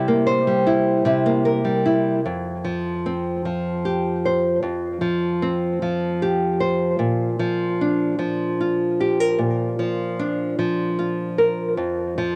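In a slow, straight 6/8 at 50 BPM, this gentle, pastoral folk fragment features a lone fingerpicked nylon-string guitar, tuned to A4 = 439 Hz, ranging from F2 to C5 and moving from C7 to Fsus2 at 2.2 seconds and Bb at 7.0 seconds. The guitar sounds small and up front, with audible finger squeak, a cassette-tape coloring and an analog delay. Light reverb adds to the homemade feel of the cassette recording, which is cut from a longer piece and runs to 12.4 seconds.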